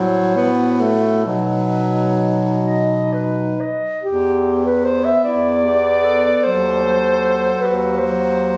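Yearning and melancholic, this brief rubato classical fragment in E minor, cut from a longer piece, moves in a slow 6/8 at 42-53 BPM as a warm, vintage-toned clarinet carries the melody, an up-front alto saxophone with light vibrato sings the second line, a clear, forward tenor saxophone supplies accompaniment and a bright bass clarinet anchors the bass, all four playing throughout under a moderate stage reverb with a phone-in-the-room intimacy, the harmony shifting toward a diminished seventh chord at 6.5 seconds.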